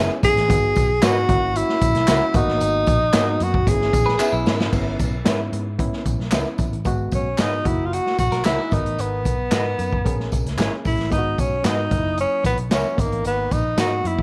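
Urgent and driving, this uptempo 1960s-style soul passage at 113 BPM puts a breathy, scooped tenor saxophone melody up front over a roomy big-band drum kit with dark cymbals and a boomy kick, a round, foam-muted picked electric bass, a reedy, lightly overdriven electric piano, twangy guitar stabs through a small old amp with harmonic tremolo, tambourine and handclaps tucked behind, and brief compressed clean guitar riffs at 4.1 and 8.3 seconds, all in light reverb.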